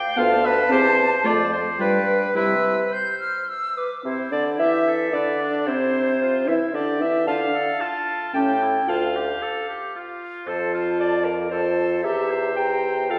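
Flute and oboe open this cheerful, lively classical-period movement for wind quintet, with the clarinet, French horn and bassoon joining at 0.2 s. It moves at a quick 112 BPM in 3/4 with a rubato feel in C major, and it is cut from a longer piece. The silver concert flute carries the melody high above the ensemble, airy and metallic with vibrato, a soft attack and lifted highs that make its line expressive. Beneath it, the oboe's warm second line sits distant and roomy, the clarinet adds a vintage brightness to the accompaniment, the French horn gives a dark inner voice with light vibrato, and the mellow bassoon anchors the bass with a soft attack. The opening idea returns at 4.0 s and ventures from C major through D minor and A7 before settling on C7 over E near 12.0 s. A wet scoring-stage reverb places the quintet further back in a resonant room.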